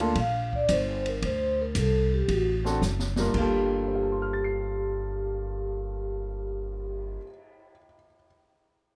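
A cool, smoky fragment of small-group swing in G minor at 113 BPM opens with an intimate grand piano with audible action noise and deep bass, over woody, thumpy pizzicato upright bass and an acoustic kit with dark cymbals, a high-tuned snare and a boomy kick, while soft-mallet vibraphone carries the melody from 0.2 s with a mellow, ringing tone, slow motor vibrato and plate reverb, and a drum fill at 2.8 s leads the harmony from Ebmaj9 and D7 to Gm9 at 3.3 s.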